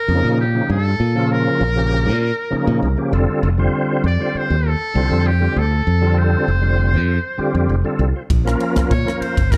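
A buzzy, metal-muted trumpet opens this slick electric jazz fusion excerpt at 99 BPM in F mixolydian, playing a distant, forceful melody with vibrato and slapback echo. A reedy tonewheel organ with chorus vibrato, key click and fast rotary speaker, and a growly, up-front fingered electric bass join almost at once over chords moving from Bbm to Fadd9 and back to Bbm. A crisp, punchy drum kit on kick, ride cymbal and rim click arrives at 8.3 seconds, with a brief, very quiet touch of high-tuned congas in a dark production with light reverb.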